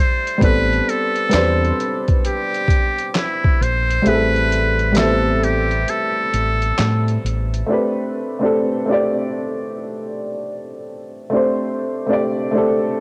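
A swung, unhurried 66 BPM groove in 4/4 from a muffled, overdriven sampler-style kit of thumpy kick, snare, hi-hat and handclaps anchors this melancholic, reflective lo-fi hip hop excerpt in A minor, with the kick dropping out at 4.1 s while a dark, round fingered electric bass holds the low end. Over a worn, woody, slightly detuned upright piano moving through Am11 and Am7, a metal-muted trumpet carries a buzzy, breathy, whispered jazz melody, its cassette-tape tone trailed by analog delay. By 7.7 s the trumpet, drums and bass have fallen away, leaving the piano alone over Am11 and D7sus4 until 13.0 s, all in an intimate, lightly reverberant home-cassette sound.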